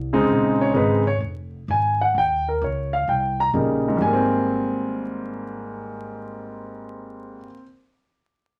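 A woody, growly pizzicato upright bass opens this swinging, sophisticated jazz excerpt, joined almost at once by an intimate, up-front concert grand piano that carries the melody with deep bass, long sustain and audible action noise over a Bbm11 to Eb7 to Abmaj9 progression, the pair heard in a moderate studio reverb beneath a layer of vinyl crackle.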